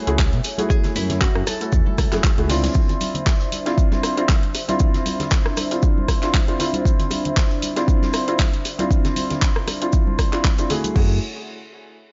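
A dry mix with a muffled top end carries this late-night, hypnotic deep house excerpt at 117 BPM, swung on the sixteenths and moving from F#m9 to Dm9. Soft, intimate felt-muted upright piano stabs, filtered and delayed, sit over a dark, detuned analog pad with chorus and 12-bit sampler grit, both pumping against an up-front, overdriven electronic kick and a layered deep house kit of crash, handclaps, hi-hat and rim click. A clean hollow-body archtop guitar plays a brief delayed melody until 2.2 s, and a smooth gliding synth bass stops at 2.7 s and returns at 11.0 s, while a very quiet jazz brush kit plays along and ringing congas and bongos stay in the background.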